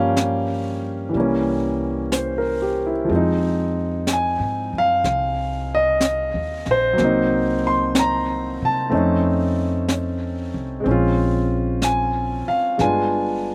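A slow 4/4 swing at 62 BPM, with eighth notes swung at 67%, sets the pace for this intimate, smoky jazz ballad, cut from a longer piece. The clear grand piano carries the accompaniment from the first moment, sitting up front with a natural tone, long sustain, audible action noise and a slapback echo, ranging from E3 to C6. Beneath it, the pizzicato upright bass is woody and growly, with a thumpy steel-string low end reaching down to G1. The brush kit enters at 0.2 seconds, acoustic and close, its high-tuned snare and hi-hat played with brushes. The harmony moves through Gm7b5, C7b9 and Fm7, then through Cm7b5, F7b13 and Bbm9, arriving on G7b9 at 12.8 seconds. The mix is dry, with little reverb, recorded outdoors.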